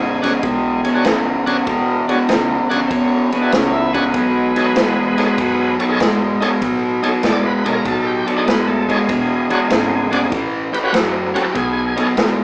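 An electric blues shuffle with a soulful, gritty mood, this short cut from a longer piece swings in 4/4. Up front, an overdriven semi-hollow guitar carries the low riff with a picked, hollow-body tone, while a bright tonewheel organ shouts its full accompaniment through a slow rotary speaker, its key click and lightly driven edge adding bite. Underneath sits an upright bass, woody and growly with a thumpy pizzicato attack on steel strings, kept in the background. A big-band drum kit enters at 0.2 seconds with kick, ride cymbal and snare, sounding distant and roomy, with a boomy kick and a medium-tuned snare. The harmony moves through E13, B13 and A13 chords, and the band plays live in one room, with moderate large studio reverb and a small-speaker sound.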